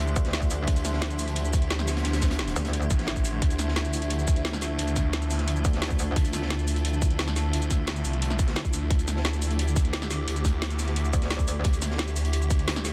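A snarling, distorted saw bass growls up front through this tense, aggressive stretch of dark technical drum and bass at 175 BPM in D minor, joined in short bursts by a metallic, chorused wobble bass that first appears at 0.2 seconds and returns at 5.6 and 11.1 seconds. A tight, layered electronic kick and a drum and bass kit with a woody snare, metallic hats and shaker drive the beat, while a very quiet, gritty breakbeat kit with a rolled-off top sits beneath. Over a held Dmadd9, a swarming, granular drone and a warbling, nostalgic lo-fi pad with chorus and phaser pulse with sidechain pumping, all within light digital ambience and a dense, heavily limited master.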